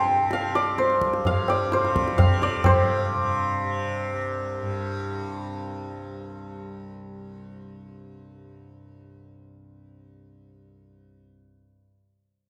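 A straight 5/4 pulse at 129 BPM underpins this serene, meditative fragment of Hindustani classical music in raga Durga on C, where a mellow, ringing, hammered santur melody sits up front over a bright, softly plucked, buzzing tanpura drone, a high-tuned, close and dry tabla plays only from 0.3 to 2.8 s, and once the santur falls away at 6.2 s the shimmering drone carries on alone until 11.8 s inside a wet recital-hall reverb.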